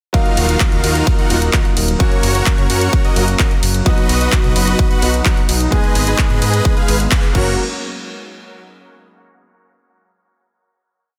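A euphoric, triumphant festival progressive house piece opens straight into its drop at 0.1 s, with a punchy, overdriven four-on-the-floor electronic kick up front, a big-room dance kit of programmed hats, ride, claps and crash, and a huge, detuned supersaw riff of dotted-rhythm chords pumping with sidechain and dub echo. A fat analog bass joins at 0.4 s with off-beat notes and a filter sweep, while a boxy grand piano with audible action noise sits in the background with held chords and syncopated pushes, and a lush, warbling pad sounds very quietly beneath over a D#madd9, F#, B, G#m progression. A band accent lands at 7.1 s before the piece closes on a final hit, all within a dense, heavily limited master with light reverb.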